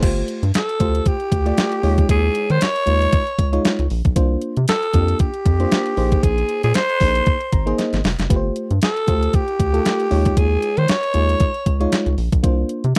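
A dry, close recording with little reverb and the intimate feel of a 1970s studio captures this feel-good, danceable slice of early-eighties boogie funk, cut from a longer piece and set on a swung sixteenth-note groove. Up front, a crisp 8-bit digital drum machine, overdriven and sampler-like, drives the beat with a thumpy kick, a medium-tuned snare, hi-hat and crash cymbal. A rubbery square-wave bass, hollow and bouncy with a resonant filter pluck, sits just as forward and rolls through the low register, while a dark, warbling FM electric piano with a faint noise layer comps underneath on lush suspended ninth chords. From 0.6 seconds a growling alto saxophone takes the solo, raspy and gritty with vibrato, close-miked in a jazz style and touched by slapback echo. Around 7.3 seconds the electric piano plays a fill, joined by a brief drum fill at 7.8 seconds before the chord cycle returns to its opening harmony.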